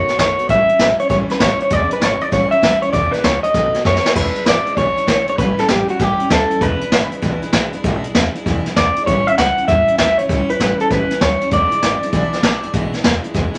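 Rowdy and rollicking, this swung rockabilly excerpt puts a twangy, slightly broken-up electric guitar through a small old amp up front on the melody, over a bright, full-bodied picked acoustic guitar with finger squeak, a woody, thumpy pizzicato upright bass on gut strings, and a roomy brush kit with dark cymbals and a boomy kick, whose fill at 3.9 seconds leads into a repeat of the opening section through the E7 and A7 changes, all set in a moderate club reverb.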